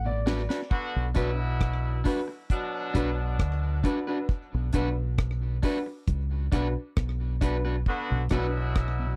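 A short drum fill opens this brief cut, and from 0.7 seconds a dry, up-front reggae kit settles into a straight, unhurried 4/4 groove of tight kick, high-tuned snare, rim click and hi-hat. The roots reggae feel is meditative and hypnotic, anchored by a deep dub bass played with the fingers, round and punchy and sitting just as close as the drums. A dark, woody upright piano with tube saturation and long sustain plays stabs, while an electric guitar at the edge of break-up adds a twangy accompaniment through tape echo. A clear, tight horn section with light vibrato carries a vintage, pop-style second line, also touched by tape echo. A mellow tonewheel organ, lightly overdriven with chorus vibrato, slow rotary speaker and slapback echo, flickers in the background at the very start and returns at 8.1 seconds. The whole recording sounds close and dry, in the manner of a 1970s studio session.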